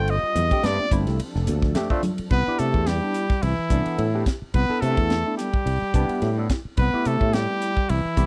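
Dry, close 1970s-style studio sound frames this funky, bright electric jazz fusion excerpt in C major at 108 BPM with a light 16th-note swing, where a clear, punchy trumpet with scooped notes leads over a barky tine electric piano treated with phaser, a growly fretless bass up front and a tight funk drum kit with a high-tuned snare, while faint hard-hand congas drop out at 2.2 seconds and a soft-attack, detuned analog pad gives way at 2.3 seconds to a warm, close-miked bass clarinet playing a second line.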